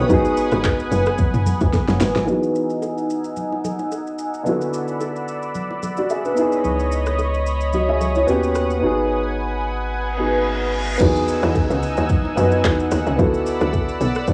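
A 110 BPM groove in 4/4, swung at 55% on the sixteenths, carries this relaxed amapiano excerpt in E major, recorded at home on cassette in a small room with light reverb. A deep house kit with a deep kick, fat snare and metallic hats sits up front with soft-handed congas and bongos behind it, while a warm, short-sustain grand piano provides accompaniment over a bright, detuned sawtooth pad that warbles with chorus and sidechain pumping. A tight, punchy FM log drum bass plays at the start and returns at 11.0 seconds, a thick sine sub bass covers the stretch from 6.6 seconds before that return, and during a long filter sweep the drums are muted from 8.8 seconds as a reverse cymbal and downlifter sound in the background.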